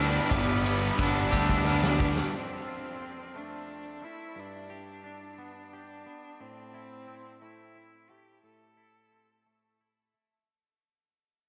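Cathartic, cinematic post-rock in 6/8, where a punchy, big-room arena drum kit, a growling overdriven bass, a sludgy distorted guitar, a faint hollow-body guitar, a very quiet, lush string section and a bell-like glockenspiel play through a drum fill before dropping away by 2.3 seconds, leaving a nasal, intense bowed cello melody up front and a twangy, chorus-washed guitar arpeggio to drift through a dreamy, reverb-soaked fade-out that the guitar carries until 10.5 seconds.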